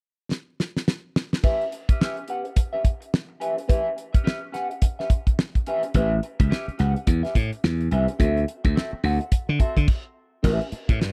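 A damped 1970s drum kit opens this playful, strutting funk excerpt with a fill at 0.3 seconds, its fat snare, tight kick and dark cymbals sitting up front at 107 BPM with a swung sixteenth feel in A mixolydian. A clean, picked electric guitar colored by wah and spring reverb plays a rootless A9 chord from 1.4 seconds, moving to D9, and a bright, growly slap bass punches in at 5.9 seconds, ahead of a brief stop near the end. The whole cut has the close, dry sound of a 1970s-style studio with little reverb.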